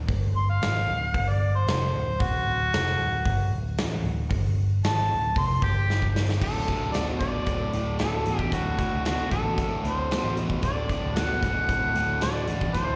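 Swaggering and raunchy, this blues rock and southern rock power trio groove, cut from a longer live gig heard through the venue's PA in a lightly reverberant recital hall, opens with a mellow, roomy harmonica soloing in scooped, jazz-style notes with overdrive, slapback and tape echo over a warm, amped picked bass and a big, punchy acoustic drum kit with bright cymbals, until a drum fill at 5.9 seconds ushers in a double-tracked, cranked stack guitar riffing bright and overdriven from 6.4 seconds.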